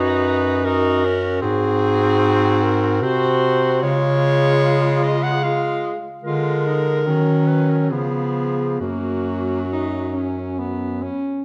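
Warm and lyrical, this short passage cut from a longer classical piece for a single-reed quartet moves in an unhurried three-beat metre with a freely breathing rubato feel. A mellow clarinet carries the melody from the start and stops at 10.6 seconds, while an alto saxophone with a smooth top and gentle vibrato shapes the second line and holds on until the end at 11.4 seconds. The tenor saxophone supplies accompaniment with its own vibrato, set distant and roomy in the blend. Anchoring the group, a clear bass clarinet sits up front as the lowest voice. The harmony drifts through a series of chords, several of them sevenths, before coming to rest on the home chord at 8.8 seconds. A wet recital-hall reverb and a dark overall production give the quartet a soft, enveloping glow.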